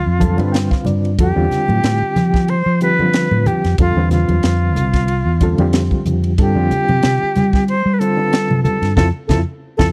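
Soaring and slick, this excerpt of electric jazz fusion moves at 92 BPM in 4/4 with a light sixteenth-note swing in F lydian, its harmony shifting from G9sus4 to Fmaj9#11, back to G9sus4 and on to Fmaj7. Up front, a bright, pure silver concert flute carries the melody with vibrato, a soft attack and a slapback echo, over a dark, round fingered electric bass. A gritty, overdriven reed electric piano with fast tremolo through a combo amp opens with a fill, a crisp, polished drum kit with a high-tuned snare and punchy kick enters alongside it, and thin-skinned congas played with soft hands sit in the background of the dry, close 1970s-style small room until a band accent from 9.0 to 9.9 seconds.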